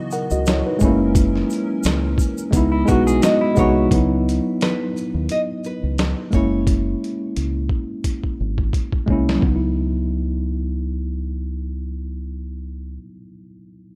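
A worn, slightly out-of-tune tine electric piano with a cassette-tape tint carries this reflective, hazy lo-fi hip hop excerpt in C# dorian at 87 BPM, moving through C#m11, F#7 and C#m9 with a gentle 16th-note swing. Up front beside it sit a gritty, pitched-down boom bap kit with a thumpy kick and a drum fill near 8.0 seconds, plus a round, punchy dub bass. A hollow, flute-like pad with ensemble chorus and a grainy egg shaker color the opening, a clean electric guitar adds a brief second line, and a full-bodied fingerpicked nylon-string guitar with audible finger squeak takes the melody from 3.2 seconds, all in a dry, rough home-demo mix.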